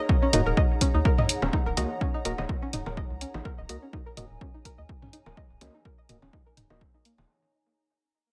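Hypnotic and sparse, this short cut of swung minimal techno rides a punchy, tape-warm electronic kick and up-front hi-hat, with electronic toms and bongos re-recorded in a large room and a rubbery, bouncy square bass pumping against the kick. A twangy, string-like resonator pluck carries the riff through chorus and delay, while a nasal, percussive organ stab sits in the background with lush chorus and tape echo, both under filter sweeps. A warbly, nostalgic lo-fi pad and a bubbling stepped-filter texture hold the Eb minor chord underneath, and the whole passage fades out across its 7.3 seconds.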